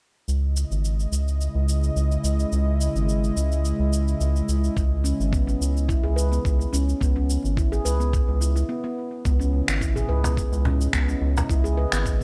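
A round, deep analog bass sits up front with sidechain pumping and a filter sweep that runs to 9.3 seconds, through a break at 8.7 seconds, anchoring this mystical, hypnotic organic downtempo excerpt in C# minor at 107 BPM, where a detuned sawtooth pad with chorus holds sustained chords, an overdriven electronic kit of cabasa, finger snaps and toms rings in a large room, a gritty, thumpy kick arrives at 4.8 seconds, a ringing nitrided-steel handpan plays meditative arpeggios through tape echo from 5.0 seconds, and a woody cajon struck with hard hands appears briefly at 10.2 seconds as the harmony moves from C#m to C#m7 under light reverb.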